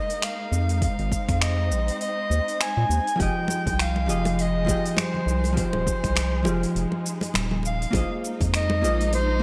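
A mellow soprano saxophone carries the melody in this sunset chillout excerpt, sitting up front yet sounding distant and roomy, with a classical-style vibrato and a touch of delay. Beneath it, a lush bowed string section holds sustained chords with expressive vibrato and portamento, moving from Bb9sus4 to Fm7 at 3.2 seconds and back to Bb9sus4 at 7.9 seconds in F minor. The groove runs at 101 BPM in 4/4 with a light 16th-note swing, built on an overdriven deep house kit of finger snaps, metallic hi-hat and shaker bathed in gated reverb, alongside a layered, overdriven electronic kick. A round analog bass, deep and wave-folded with a fast attack and evolving tone, sits prominently up front. At 3.2 seconds a dark, clean hollow-body jazz guitar joins with picked, delayed accompaniment, while close, dry congas struck with hard hands settle into the background. The bright 1980s-style digital production wraps the smooth, warm mood in lush hall reverb with a hint of small-room ambience.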